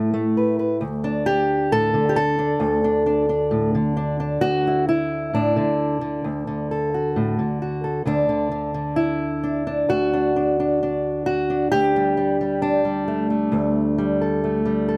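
A lone fingerpicked acoustic guitar opens the recording, an old ladder-braced instrument with a dark, woody, boxy voice and the character of old strings. This is solo fingerstyle folk in D major at an unhurried 66 BPM in a straight 4/4, carrying a pastoral, nostalgic mood. The guitar ranges from D2 up to B4, moving from Asus2 to D5 and Dadd9 before settling onto a Gsus2/D at 11.7 seconds. The playing sits up front, captured by close, detailed microphones in a dry space with little reverb. Lasting 15.0 seconds, it is cut from a longer piece.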